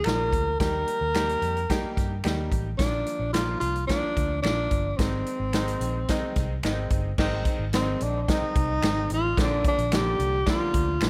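A breathy, whispered tenor saxophone opens this joyful, danceable fragment of uptempo 1960s-style soul, singing an intimate jazz-style solo with vibrato, scooped notes and a touch of analog delay, while compressed finger snaps sit in the background. A brilliant grand piano with short sustain and a dark, round, foam-muted electric bass join almost at once, along with a swinging big-band drum kit whose punchy kick, snare, hi-hat and crash sound up front and natural in a big room. The chords move among Bb, Eb and Ab, and the music shifts into a new section at 7.2 seconds, all set in light, small-room reverb.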